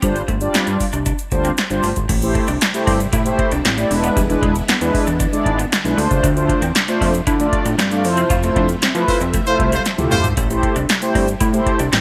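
A punchy, overdriven electro drum machine with a deep kick, metallic hats, handclaps and toms drives this slick, late-night early-eighties boogie funk cut at 116 BPM in A minor, joined by a fat, wave-folded analog bass, round and brassy synth brass with chorus, a dark, slightly broken-up picked guitar riff and a grainy tube shaker in the background. From 2.1 seconds a very quiet, swirling phased string machine adds sustained chords as the harmony moves from Am7 through E7 and Dm7 to Fmaj7. A clear, punchy horn section with vibrato briefly appears at 9.1 seconds during a band accent and drum fill, all set in a bright, lightly reverberant 1980s digital sheen.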